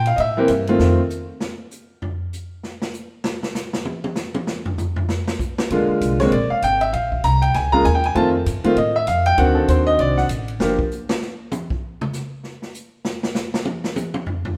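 A clear, up-front upright piano carries a playful, swinging solo in this jazz trio excerpt, with pizzicato upright bass joining it at the start and again from 5.7 seconds, while a swinging big-band drum kit with a punchy kick takes solo breaks from 0.8 and 10.6 seconds, the band heard together inside a wet stone room.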